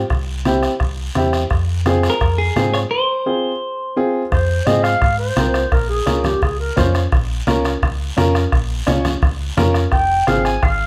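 Driving and danceable, this cumbia excerpt rides on a round, dark fingered electric bass, a soft-beater bombo, low-tuned, thick-skinned congas set back in the mix and a raspy guiro, while an intimate, woody upright piano with audible action noise carries the chords up front. A bright, twangy clean electric guitar with spring reverb takes the melody from 2.1 s, and after a break a breathy clarinet enters at 4.3 s for a jazz-style solo full of vibrato, subtone and scooped notes.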